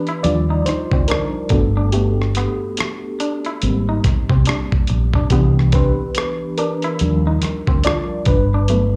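Heard as a live gig through the venue's PA, this excerpt carries a light club reverb around the band. It is relaxed, smooth R&B with a neo-soul lean at 71 BPM in 4/4, swung at 60% on the sixteenths. An FM electric piano with tremolo takes the solo across the full 9 seconds, its dark, full-bodied tone carrying a noise layer, a fast attack and decaying notes, placed up front with plate reverb and slapback echo. Also forward in the mix, a woody fretless electric bass sounds round, amped and hollow-bodied, while a dusty soul sampler-style drum kit adds a thumpy kick, hi-hat and rim click with a gritty, compressed, tape-warm character. Further back, an electric guitar through a small old amp plays a bright, twangy, slightly broken-up, lo-fi second line, wrapped in spring and plate reverb with slapback echo. The harmony moves through Ebmaj9, Gmaj9, Abmaj9 and Cmaj9 before returning to Ebmaj9 and Gmaj9.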